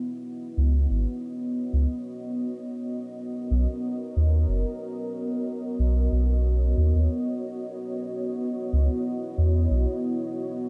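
A dark, detuned sawtooth pad with chorus and its own reverb opens this meditative, spacious ambient dub fragment in C# dorian at 92 BPM with a gentle swing on the 16ths, sustaining chords that move from C#m11 to Bmaj9 and return to C#m11 at 7.1 seconds, while a round, soft sub bass with tube saturation enters at 0.6 seconds and holds deep, sustained notes up front, all set in a light digital ambience.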